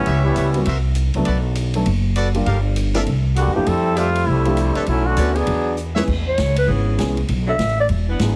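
Energetic big band swing at 199 BPM, cut from a longer piece, in which a tight, vintage-toned trombone section carries the opening lead over a woody, growly pizzicato upright bass, a polished grand piano, clear trumpet-section stabs and a punchy, naturally recorded drum kit with crash, ride and hi-hat, until a drum fill at 5.8 seconds hands off to a raspy, subtone clarinet solo with scooped notes entering at 6.3 seconds, cushioned by soft-attack saxophone-section chords, all in a dry, heavily compressed radio sound.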